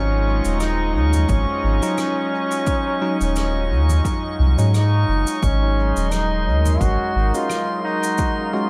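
A gently swung sixteenth-note groove in 4/4 sets a peaceful, hazy ambient dub mood in this short cut from a longer piece. A soft, round sub bass sits deep and up front, while a distant, roomy soft-mallet kit of cabasa, rim click and toms carries dub echo, joined at 1.3 s by a punchy, layered electronic kick. A warm analog pad holds smooth, warbling chords through chorus, moving from Ebm7 to Ab7sus4 at 5.4 s, with a glassy, drifting high texture of chorused, reverberant overtones floating above. The clear trombone leads the melody with light vibrato in a classical style, its line carrying dub echo, and a very quiet, bell-like tine electric piano adds bright, clean stabs from 1.8 s. Light reverb and small-room ambience lend the mix a soft, intimate space.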